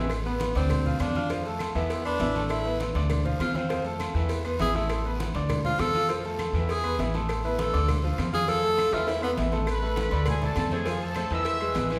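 Salsa at a driving, danceable 201 BPM in A harmonic minor, this fragment of a longer piece sets a clear, punchy tenor saxophone solo with vibrato up front over a brilliant grand piano with audible action noise and a thumpy, woody gut-string upright bass. Beneath them sit background percussion of thick-skinned congas, ringing agogo bells and timbales, raspy guiro and grainy maracas, along with a close, dry, tight high cowbell and faint woody claves, all bathed in a wet recital-hall reverb. A drum fill at 8.8 seconds then hands the tune to a bright trumpet section at 9.7 seconds over the repeating Asus2, Dm, F and E changes.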